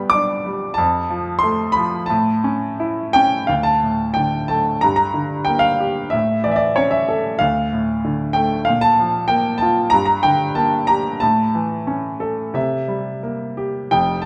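A clear, natural baby grand piano sits up front and plays alone from 0.0 to 14.3 s in this hopeful, sunny fragment of lyrical classical solo piano, moving with a rubato feel at 83-97 BPM in 4/4, settling into D harmonic minor from 3.5 s, its short-sustained notes spanning F1 to D6 and carried by a moderate scoring-stage reverb.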